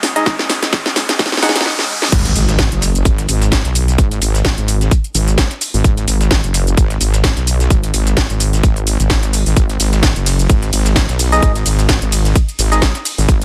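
A swung 129 BPM pulse in 4/4 drives this swaggering, aggressive bass house cut in G# minor, taken from a longer piece. The opening 2.1 seconds are a build-up, with a drum fill, a background riser and a filter sweep, while a cloudy, blurred granular pad sits very quietly under a hollow, percussive organ stab coloured by chorus, cassette tape, sidechain pumping and dub echo. The drop lands at 2.1 seconds with an impact, and the heavy, saturated wobble bass enters up front, detuned and sawtooth-edged with chorus and sidechain pumping. A tight, tape-warm electronic kick leads the drums, layered with an upfront house kit of cracking snare, metallic hats, shaker, ride and crash re-recorded in a small room, plus a gritty sampler-style kit of filtered hats and snare tucked in the background. The organ stab returns near the end at 11.3 seconds, all set in a digital ambience.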